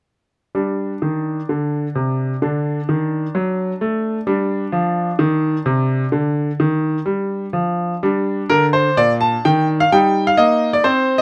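A bright baby grand piano, brilliant and natural with long sustain and placed up front, plays solo from 0.5 to 11.2 seconds in this dramatic, elegant passage from a classical-period sonatina in G minor, moving at 128 BPM in 4/4 with a rubato feel across a range of Bb2 to A5, heard through close, detailed microphones with little reverb, and turning to a new section at 8.0 seconds on a G minor chord.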